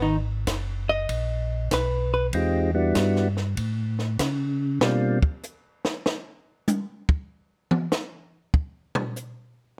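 Bluesy and smoky, this swung soul jazz organ trio excerpt at 97 BPM opens with a dark, clean, picked hollow-body electric guitar comping over a round organ bass line colored by chorus vibrato and a slow rotary speaker, while a compact acoustic cocktail kit with a high-tuned snare, tight kick and shadowy cymbals joins at 0.5 seconds; a mellow, percussive organ with third harmonic percussion, also turning through a slow rotary speaker, takes the melody from 2.3 seconds, and from 5.2 seconds the dry drums carry on alone in a light reverb.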